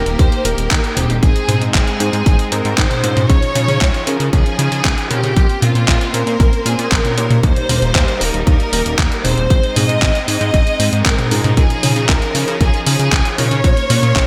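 A dry, close-sounding mix opens this danceable, playful italo disco excerpt at 116 BPM in Ab major, where a lush, smooth-topped symphonic violin section carries the melody with vibrato and tape echo over clear, bowed studio strings holding sustained chords in the background. A glossy, chorused synth bass with pulse-width movement and a filter pluck anchors the harmony, while a vintage electric grand piano with a clangy low end adds stabs from further back. Up front, a gated 80s drum machine with handclaps, hi-hat and toms in gated reverb joins at 0.1 seconds, and a punchy, layered electronic kick follows at 0.2 seconds, all over a cycle of Eb, Ab, Dbadd9 and Bbmadd9 that comes around twice.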